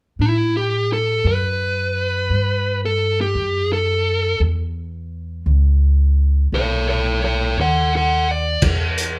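A slow 12/8 blues at 57 BPM with a straight, rollicking yet soulful feel, this short excerpt features a dark, smooth overdriven electric lead guitar carrying the picked melody over a woody, thumpy pizzicato upright bass with gut strings through chords from Gmaj9/F# to C#m and B7, before a vintage kit with dark cymbals and a punchy kick arrives at 8.6 seconds, all played live together in one room with light reverb.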